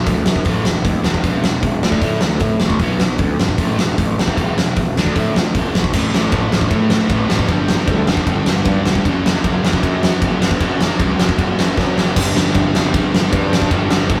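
Punk rock at 154 BPM in 4/4 with a straight feel, this short excerpt sounds angry and raw, cut from a longer piece and captured as a rough rehearsal-room recording with light reverb and saturation. A big acoustic drum kit sits up front, with bright cymbals, a fat snare and a punchy kick ringing in a natural, roomy space across crash, hi-hat, ride and snare. Beneath it, a fuzzed, growly picked electric bass drives the low end while a sludgy, double-tracked distorted guitar grinds out the riff in the background. At 5.9 seconds, a second overdriven, double-tracked guitar joins very quietly with its own riff as the chords shift from a churn of A5, E5, D5 and Bm toward A5, G5 and F#5. A drum fill at 11.8 seconds pushes into a closing passage on G5 at 12.2 seconds.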